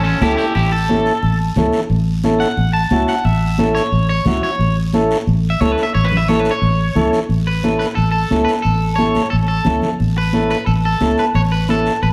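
Festive and sunny, this cumbia fragment opens with a twangy, slightly broken-up electric guitar taking a picked solo up front for the first 7.3 seconds, its tone soaked in spring reverb, slapback echo and plate reverb. A dark, round fingered electric bass sits close beneath it, while a reedy vintage combo organ adds clean accompaniment and high-tuned congas with a thin, bright skin ring from the background. A raspy, dry guiro scrapes along quietly before the music moves into a new section at 7.3 seconds, all set back in a moderately reverberant studio room.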